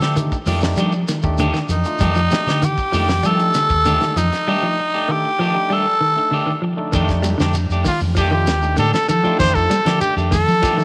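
Hypnotic and driving, this afrobeat excerpt opens on a raspy, growling tenor saxophone solo over a slightly broken-up electric guitar playing stabs through slapback echo, a round fingered electric bass, a damped 70s drum kit with a fat snare and a grainy shekere, joined at 0.2 seconds by a barky tine electric piano, clean picked electric guitar arpeggios and distant congas, before a punchy, up-front trumpet takes the melody at 7.9 seconds, all within a light, small-room ambience.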